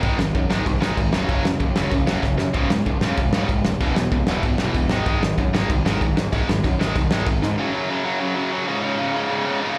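A tight, double-tracked distorted guitar drives this rowdy, upbeat punk rock excerpt at 191 BPM, its bright, picked power-chord riff moving through Ab5, Gb5, Db and E5 up front. A growly, fuzz-overdriven picked bass and a loose acoustic indie drum kit with a fat snare and tight kick charge along beside it, with drum fills at 2.2 and 7.4 seconds, before the guitar carries on alone from 7.5 seconds. It sounds like a live club gig heard through the venue's PA, with only a touch of club reverb.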